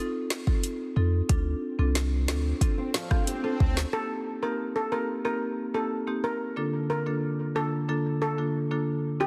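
Dancehall at 91 BPM in C dorian, bouncy and sultry, built on a woody rosewood marimba that pumps with sidechain throughout this cut, over F7 and Dm7. An overdriven electronic kit with a deep kick, woody snare and metallic hats sits up front beside a punchy sine sub bass with a pitch-drop attack, while an electronic swell sits in the background and a dark, thumb-plucked flamenco guitar adds arpeggios from 2.8 s. At 3.9 s the kit, bass, guitar and swell drop away and a shimmering steel pan carries the melody through tape echo over Cm7 and Bbmaj7/D, set in light small-room reverb within a dense, heavily limited modern master.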